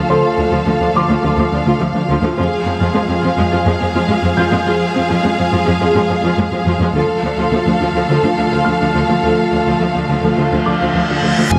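Futuristic and relentless, this hybrid orchestral and electronic cinematic cue builds over Dm, Fm and Dm chords as an airy, breathy pad with chorus, a tight, driving sawtooth synth arpeggio, a felt-muted upright piano with tape echo and audible action noise, a soft-attack violin second line, background violas with portamento, mellow French horns and smooth, close cellos form a lush bed in wet scoring-stage reverb, until a reverse cymbal and electronic impact at 10.2 seconds lead to a final moment at 11.5 seconds where focused, rich violins carry the melody alongside barely audible trombones, a close-miked tuba and distant double basses.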